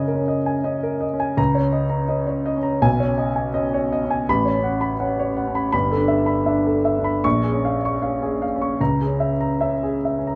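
Classical impressionist solo piano with a wistful, nocturnal mood, this brief excerpt cut from a longer piece features a grand piano, present and up front with long sustain in light reverb, moving in free rubato across a span from G1 to C#6 through lush sixth-nine chords such as F#69, B69 and G69 before settling on C#m6 at 8.8 seconds.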